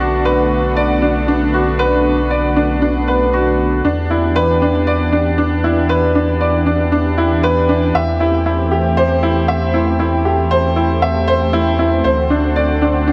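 A moderate scoring-stage reverb with a small-room ambience frames this cinematic, intimate piece of electronica, a short passage cut from a longer work and tuned to A4 = 443 Hz. At 117 BPM in a straight 4/4 and in E minor, a bright, woody upright piano sits up front, playing a riff whose slightly detuned tone is trailed by delay. Beneath it, a lush unison pad of thick, warbling sawtooth voices holds sustained chords, its slow attack and long release carrying a vintage character and a coat of chorus. A deep, round sine sub bass anchors the low end with a fast attack and mellow, sustained notes, also placed up front. The harmony moves through Bm7, Em7, Am7/E and D7, and all three parts play together for the full 13.1 seconds.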